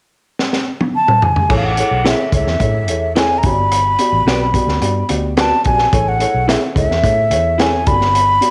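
A crunchy breakbeat drum kit opens this short cut from an uptempo 1960s-style soul piece, its fill beginning at 0.4 seconds and running into the groove at 108 BPM in a straight 4/4. The kit sounds gritty and saturated in a small room, with a punchy kick, a high-tuned snare and dark cymbals sitting up front. A breathy, hollow silver concert flute carries the melody from 1.0 seconds, its straight, tongued tone given a slapback echo. At 1.5 seconds the band settles on Amaj7, with a woody, slightly detuned upright piano and a round, foam-muted fingered electric bass joining. The harmony sways between Amaj7 and Gmaj7, while from 2.0 seconds a slightly broken-up electric guitar through a small old amp adds lo-fi picked stabs in the background, bathed in spring reverb. A moderate plate reverb frames the whole, giving the uplifting mood a warm glow in A major.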